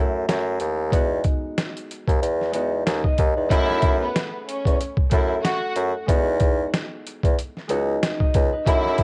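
Ringing, fingerpicked concert harp and a clear, up-front bassoon bass with light vibrato open this tough, dark boom-bap hip-hop excerpt at 93 BPM with a swung 16th feel, joined at 0.3 seconds by a gritty, pitched-down sampler-style drum kit with a thumpy kick and medium-tuned snare, before a lush, bowed violin section carries a smooth melody with tape echo from 3.5 seconds over F#m7 and Emaj7, all wrapped in the studio ambience of a home cassette recording.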